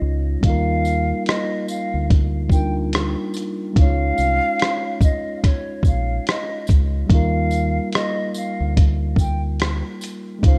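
A mellow tine electric piano and a deep, round fingered electric bass open this cosy lo-fi hip hop excerpt in Eb major at 72 BPM, moving from Ebmaj9 to Dbadd9 and back over a 16th-note swing. At 0.4 seconds a dusty, sampler-style soul drum kit comes in up front with a thumpy kick, rim click, hi-hat and shaker, its gritty 12-bit texture sounding compressed and re-recorded in a large room. A hollow, pure concert flute with vibrato carries the close-miked melody above, while a jingly tambourine sits in the background of the rough, lightly reverberant home-demo mix.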